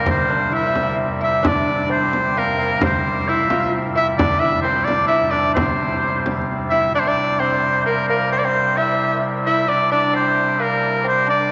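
A bright shawm carries the melody up front, its folk-style line sung with vibrato and a smooth top between Bb4 and E5 in this festive, rustic medieval dance. Set in C mixolydian at 131 BPM in a straight 3/4, the fragment is cut from a longer piece and runs through its opening strain twice, the repeat beginning at 6.9 seconds. Beneath the shawm, a mellow, delicate lute plays a fingerpicked second line on gut double strings, some of them octave-doubled. A pipe organ on a soft reed oboe stop sustains a drone in baroque voicing, its chiff audible. A deep, large frame drum, close and dry and struck with hard hands, drives the dance from the start until it stops at 6.8 seconds. The recording sits in a cathedral reverb with a 6.5-second decay and carries a layer of vinyl crackle, giving it an aged, resonant character.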